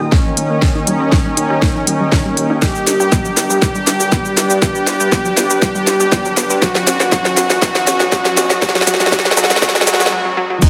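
A soft, smooth supersaw carries the melody in this cinematic, dramatic stretch of melodic techno, cut from a longer piece, its tones coloured by tape echo and the pulse of sidechain pumping. Up front, a punchy, tape-tinged electronic kick and an overdriven techno kit with a cracking snare, smooth hats, shaker and crash drive a steady four-four build-up, with a drum fill running until a brief break at 10.1 seconds. Behind them sit a lush, ring-modulated unison pluck playing arpeggios, brassy stabs from an analog pad roughened by vintage sampler grit, and a deep, moody ambient pad holding sustained chords, while filter sweeps move across the arpeggio, the analog pad and the whole mix. A fat, detuned analog bass sits very quietly underneath as the harmony moves from D# to G to B. A faint electronic riser enters at 5.4 seconds, and a lush hall reverb and a dense, heavily limited master give the passage a big, polished sheen.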